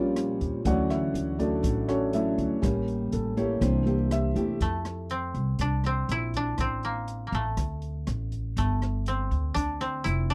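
Sophisticated and sunny, this brief bossa nova excerpt moves at 121 BPM in a straight 4/4 feel, settling into F major from 4.6 seconds. A dark grand piano with long sustain opens up front with a solo passage through rich jazz harmonies such as Eb9, Dmaj7 and A7b9, supported by a small, thumb-plucked nylon-string guitar that stops at 5.1 seconds. Beneath them, a pizzicato upright bass with a woody, thumpy tone and steel strings anchors the low end, while an open jazz drum kit in a small room adds hi-hat, rim click and a boomy kick from 0.2 seconds. At 4.6 seconds a koto takes over the melody, mellow and plucked with fingerpicks, sitting close and forward over chords like Fmaj9, Am and Gsus2. The whole recording has little reverb, with the dry, close sound of a 1970s studio.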